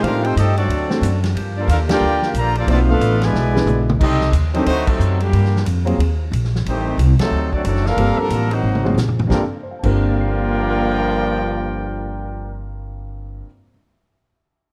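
Big band swing with a sultry, dramatic mood, this excerpt from a longer piece puts a bright, tight trumpet section on the melody over a punchy trombone section's second line, while a distant, mellow saxophone section holds very quiet sustained chords until 4.0 seconds. An intimate grand piano with audible action noise and long sustain accompanies throughout, a woody pizzicato upright bass sits up front, and a vintage drum kit with a rolled-off top plays until 9.9 seconds, adding fills that lead into new sections. The band hits accents starting at 1.9 seconds, all within the moderate reverb of a large studio room.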